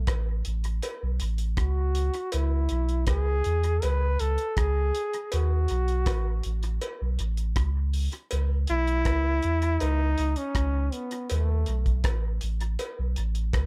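A dry, close-sounding cut from a longer roots reggae piece sets a laid-back, serious mood over straight, unhurried time, moving through diminished, minor and suspended chords. A round, sine-like sub bass sits up front beside a cloth-damped, thuddy acoustic kit with a tight kick, rolled-off top, hi-hat and rim click touched by dub echo, while a cowbell sounds distant in a large room. Up front, a smooth, punchy solo trombone carries the melody with vibrato, tape echo and plate reverb until it stops at 12.0 seconds.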